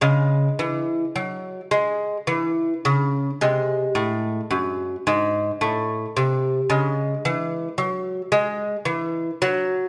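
In a rubato 12/8 lilt at 73 BPM in dotted quarters, this serene, dance-like baroque-style classical piece for solo lute moves through C# minor to G#7 and back, the bright, delicate gut and double strings, some doubled at the octave, fingerpicked up front in the low register across the full 9.9 seconds, and set in a moderate recital hall reverb.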